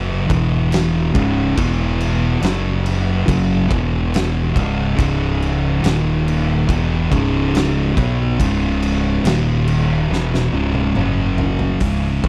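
A studio-reverb sheen frames this brooding, ominous stoner and doom metal excerpt at 70 BPM in C# minor, tuned to A4 = 436 Hz, where an up-front, double-tracked fuzz guitar riff grinds through chords built on E5, F#5 and C#m alongside a bright, growly overdriven fingered bass, while an oversized low-tuned acoustic kit with a boomy kick, fat snare and dark cymbals enters at 0.3 seconds in a saturated, pumping room and drives a drum fill from 10.1 to 11.8 seconds.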